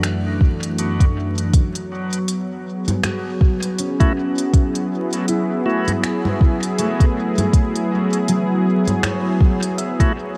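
A soft, up-front electronic kick anchors this deep, spacious ambient dub piece at 80 BPM in F# minor, beneath a smooth, detuned sawtooth pad with chorus, ringing thumb-plucked concert harp arpeggios carrying dub echo and opening under a filter sweep, crisp hi-hats, congas and finger snaps from an electronic kit, a barely audible bubbling, resonant texture near 0.5 seconds, and reedy, bright tonewheel organ stabs with key click and slow rotary speaker arriving at 4.0 seconds, over a bed of light reverb and vinyl crackle.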